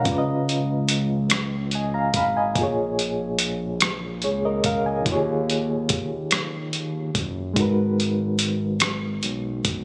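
A reedy electric piano with a fast tremolo and a smooth, evolving synth bass open this yearning, late-night slow R&B fragment in 6/8 at 48 BPM in G# dorian, with the piano sitting up front and the saturated sawtooth-and-square bass sustaining low with vibrato. From 0.1 seconds a dusty, sampler-style soul kit joins with hi-hat, a thumpy kick and rim clicks, its gritty overdriven sound up front and re-recorded in a small room. The harmony moves through C#7, A#m7, D#9sus4 and G#m9, and the whole piece has a light digital ambience, club reverb and a compressed, phone-in-the-room character.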